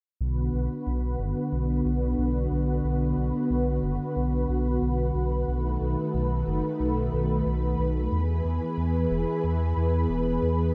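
Synthwave with a cinematic, nostalgic mood, this short piece cut from a longer work moves at an unhurried pace in a straight four-beat feel. An analog string pad carries sustained chords from 0.2 to 10.7 seconds, its silky, string-like sawtooth tone softened by ensemble chorus, vibrato, a moving notch and a touch of vintage 12-bit sampler grit. Beneath it, a dark detuned saw bass holds the low end over the same span, deep and rumbling with a beating quality and tube saturation on its fast-attack, sustained notes. Both parts sit up front in the mix, bathed in a lush hall reverb with a bright 1980s-style digital sheen. The harmony opens on B minor, shifts to B7 at 5.5 seconds and settles on E at 8.1 seconds.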